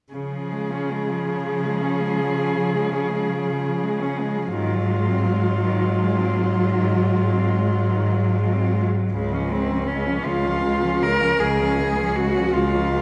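A slow, rubato 12/8 lilt at 48-56 BPM carries this lyrical classical fragment for a cello quartet in Db major, drifting from Db to Ab at 4.6 s and settling back on Db as a new passage opens at 9.1 s. Up front, a rich, smooth solo cello sings the melody with vibrato over a focused bowed bass line. Behind them, a second cello traces an even second line, and a more distant, warm cello adds expressive accompaniment with vibrato and portamento, all set in a concert hall reverb heard from further back in the room.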